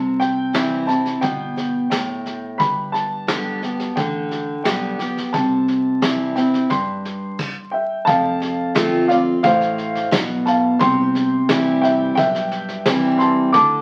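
Nostalgic and easygoing, this excerpt of honky-tonk and classic country strolls along at 88 BPM in C major, moving through C, G and F. A dark, woody upright piano carries the melody up front with long sustain, beside a bright, full-bodied picked steel-string acoustic guitar whose finger squeak comes through. Behind them, a round, foam-muted fingered electric bass sits in the background and a vintage brush drum kit with a punchy kick and rolled-off top keeps time, all heard through a wet studio reverb and the crackle of a very old 78 rpm record.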